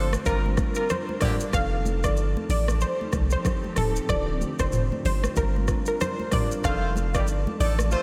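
A mellow, sultry afrobeats excerpt in G minor at 94 BPM opens with a round, detuned analog pluck carrying the melody up front through chorus and analog delay, alongside a distant horn section with light vibrato, a clean tine electric piano with medium tremolo, and a punchy sine sub bass. A deep house drum kit with a deep kick and metallic hats enters at 0.1 s, with thick-skinned congas sitting close and dry in the background, while a cloudy granular pad sustains Gm7, F7 and Dm7 chords beneath; the horns drop out after 1.3 s and return at 6.6 s. A lush hall reverb soaks the dreamy mix, and the swung sixteenths give it an easy lilt.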